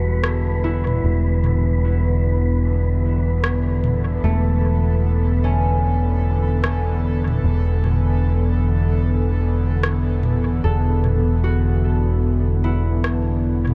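Ambient dub at 75 BPM in 4/4, this deep, spacious excerpt from a longer piece rests on a single Em7 chord in E dorian, with a gentle 16th-note swing. A soft, detuned pad holds sustained chords with slow attacks and long releases, its breathy sawtooth-and-triangle body thickened by chorus and a touch of ring modulation. A fingerpicked concert harp rings out arpeggios through a low-pass filter and dub echo, while a round, punchy fingered electric bass sits up front on a low E, given grit by tube saturation. Entering at 0.2 seconds, an organic electronic drum kit with a tape-softened, small-room character plays rim clicks and toms, sent into dub echo of its own. High above, a wind-like tuned noise texture hovers on B4, blurred by its built-in reverb. The overall production is dark and close, with little room sound.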